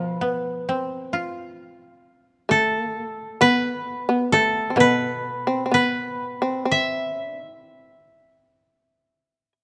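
Loose rubato phrasing carries this brief, austere and calm fragment of Japanese traditional music, cut from a longer piece and set in light reverb with close, detailed microphones. Up front, a koto played with fingerpicks carries the melody in a dry, woody voice, while a powerful, buzzing fretless shamisen, plectrum-plucked and percussive, adds a second line in a lower register. A second, mellow koto supplies accompaniment until it stops at 7.6 seconds, and the melody rings on to 9.6 seconds.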